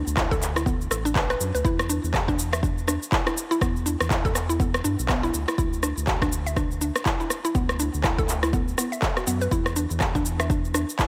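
Hypnotic and earthy, this afro house excerpt swings on sixteenths as a woody, mallet-like synth pluck spins chorused, delayed arpeggios with a sidechain pump, while a round, dark analog bass sits underneath, an up-front layer of electronic shaker, rim click and handclaps carries the groove, and a deep, tape-toned kick enters at 0.2 seconds, all under light reverb as the chords move between Dadd9 and Em7.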